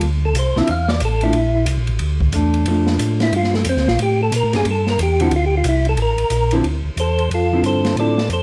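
The percussive tonewheel organ carries the melody and solos until 6.6 seconds, its round tone marked by third-harmonic percussion and sent through a slow rotary speaker and plate reverb, sitting up front. This short cut from a longer soul jazz organ trio piece has a smoky, bluesy mood and a swung feel in 4/4. A second, mellow tonewheel organ plays the bass with audible key click and its own slow rotary speaker, while a clean, hollow-body archtop guitar, miked and amplified, adds dark picked accompaniment. An open acoustic jazz kit in a small room supplies hi-hat, ride, snare and a boomy kick, with dusky cymbals sitting low in the mix. The harmony moves from Dm9 through Bbmaj7, A7(no3) and C69, returning to Dm9 as a new section begins at 6.6 seconds, all inside a light reverb.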